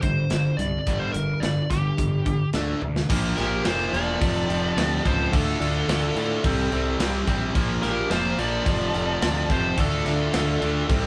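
A straight 4/4 pulse at 108 BPM drives this aggressive hard rock excerpt in G minor, with a tight metal drum kit up front: a medium-tuned snare, tight kick, hi-hat, toms and crash cymbal, its tone rolled off at the top. A biting, overdriven lead guitar carries the melody between G4 and D5 from the start, over two picked rhythm guitars playing the riff, a cranked stack sitting in the background and an overdriven semi-hollow body with a hollow ring. A fuzz-laden picked electric bass, punchy and bright, digs down as low as E1. After a drum fill at 2.8 seconds, the chords move from G5 and D5 into a Bb5, F, Dm and C5 progression, and at 3.4 seconds a high-gain, distorted second guitar line enters in the background between F4 and A4. Light reverb gives the sense of a band playing live in one room.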